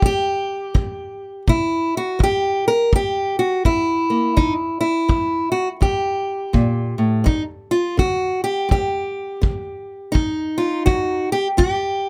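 A bright, boxy parlour-guitar sound sits up front in a light reverb, with finger squeak audible as a fingerpicked steel-string acoustic guitar carries the melody from F2 to Bb4. This swaggering, laid-back acoustic country blues excerpt in C mixolydian moves at 83 BPM in 4/4 with a 63% swing on the eighths, passing from a rootless C to G5 at 7.3 seconds and F5 at 10.1 seconds. A punchy, roomy kick drum played with brushes keeps the beat beneath the guitar until 11.8 seconds.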